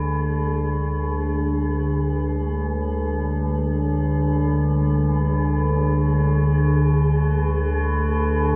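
A metallic, inharmonic drone sounds alone and up front in this spacious, peaceful free-time piece of world meditation music, its eerie FM tone swelling in on a slow attack to sustain and fade on a long release between D2 and D3, coloured by chorus, its own reverb and analog delay in an echo-heavy, lightly reverberant mix tuned to A4 = 441 Hz, heard as a short cut from a longer work.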